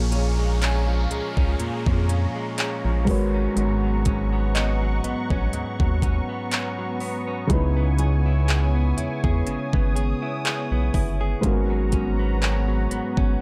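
Contemporary R&B in G# minor at a slow 61 BPM, this moody, sensual passage is cut from a longer piece and sets a lightly swung trap groove under drifting minor-seventh and eleventh chords. A rubbery, hollow square bass sits up front with a dark, bouncy pluck, joined from 0.1 s by an overdriven trap kit with a knocking kick, crisp hi-hats and handclaps. Behind them, a felt-muted upright piano adds soft, intimate accompaniment through tape echo. A bright, clean electric guitar recorded direct picks arpeggios, also fed into tape echo. A smooth, detuned sawtooth pad holds sustained chords with chorus, and a glassy, crystalline wavetable pluck glints in the background from 0.6 s to 8.0 s with chorus and tape echo. A downlifter sweeps through the opening until 7.5 s, and the dry, echo-heavy mix keeps the low end close and present.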